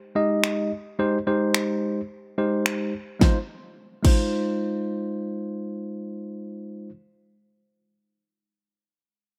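The sound is dry and close, with little reverb, and both parts sit up front in this short cut from a longer dance-pop track. A clean tine electric piano, played through a combo amp, carries the accompaniment from 0.2 seconds, moving between Ab3 and Eb5. An electronic, layered pop drum kit sits clearly louder than the piano, pairing a punchy kick and a fat snare with finger snaps and a crash cymbal, all re-recorded in a small room. The harmony rests on Abmaj7 before shifting to Fm7 at 3.2 seconds, where a new section begins. The drums stop at 4.2 seconds, leaving the electric piano alone to close out this driving, energetic passage.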